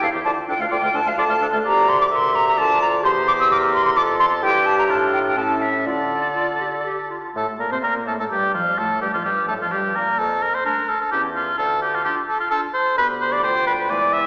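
Restless and stormy, this quick classical-period movement for wind quintet moves at 129 BPM in 3/4 with a rubato feel, set in D minor and tuned slightly low at A4 = 436 Hz. A bright, airy silver concert flute carries the melody with vibrato and a soft attack. A clear oboe sits up front on the second line with light vibrato. Beneath them a distant, roomy clarinet and a dark, smooth-topped French horn, kept in the background, supply the accompaniment, while a warm bassoon holds the bass with a touch of vibrato. All five instruments play throughout the 14.3 seconds, with the passage stated and then restated from 7.4 seconds, where the harmony shifts toward A minor and darker colours such as a Gm9/F and a closing Bm7b5/D. The sound is bathed in a wet concert hall reverb with a faint mains hum underneath, and the clip is cut from a longer piece.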